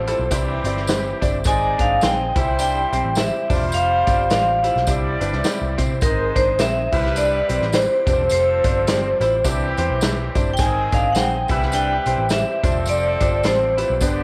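A ringing, metallic vibraphone struck with hard mallets carries the melody, its fast motor vibrato shimmering through a boxy small room, in this joyful, uplifting slice of uptempo 1960s-style soul with a swung 4/4 feel. Beneath it, a distant, roomy horn section with light vibrato plays a warm second line, while a foam-muted, round and punchy picked electric bass anchors the low end. A clear, intimate grand piano adds accompaniment with audible action noise, and a slightly broken-up, lo-fi electric guitar through a small old amp picks a compressed riff with subtle chorus in the background. A gritty, overdriven tonewheel organ with slow rotary speaker holds very quiet sustained chords, and a jingly, close and dry tambourine plays in the background alongside a swinging big-band drum kit with dark cymbals and a punchy kick. The chords cycle through C, Ab and Fsus2, and a wet spring reverb washes over the mix.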